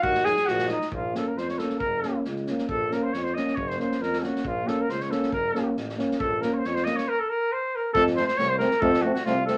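Bittersweet and virtuosic, this Balkan brass band snippet in 2/4 puts a clear flugelhorn with light vibrato up front on the melody, while an alto saxophone adds a brief second line that stops at 0.9 seconds; a pair of euphoniums, one mellow and one warm, enter at 0.3 seconds as accompaniment, a classical-style tuba carries the bass, and a distant, roomy acoustic drum kit with a punchy kick and medium-tuned snare played with bundle sticks sits low beneath a wet studio ambience and vinyl crackle.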